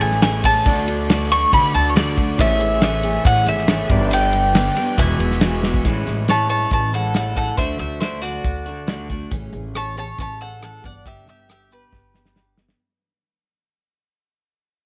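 A light reverb and small-room ambience frame this short cut from a longer folk rock and heartland rock piece, warm and nostalgic in mood, moving at a straight 138 BPM in 4/4 in A major, tuned slightly below standard to A4 = 436 Hz. Up front, a bright bowl-back mandolin carries the melody with its doubled strings, over a dry, damped 70s drum kit with a medium-tuned snare, tight kick, hi-hat, ride and rim clicks. A woody pizzicato upright bass and a full-bodied jumbo acoustic guitar, picked in the background, hold the ground throughout, while a twangy, slightly broken-up electric guitar through a small old amp plays a riff until 9.3 seconds. For the opening stretch a very quiet, brilliant grand piano with audible action noise and a reedy tonewheel organ on sustained chords add color, both dropping out at 5.8 seconds. There the mandolin takes a solo over chords cycling through Amaj7, D and G as the whole fades out, with a drum fill closing the final moments.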